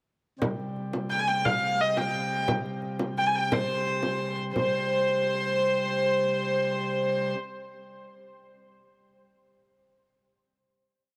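Medieval dance in 6/8 at 117 BPM (counted in dotted quarters), tuned to A4 = 444 Hz, with an ancient, mysterious mood in a complete short piece bathed in a huge ambient reverb with a 4.4 s decay. A chamber organ's principal chorus holds a full, chiffy drone in the low register beneath a small, bright frame drum keeping an evenly spread pattern until 4.7 s. The clear, nasal hurdy-gurdy enters at 1.1 s up front with an airy, earthy tone, playing an ornamented modal melody before the piece settles onto a final chord at 4.5 s.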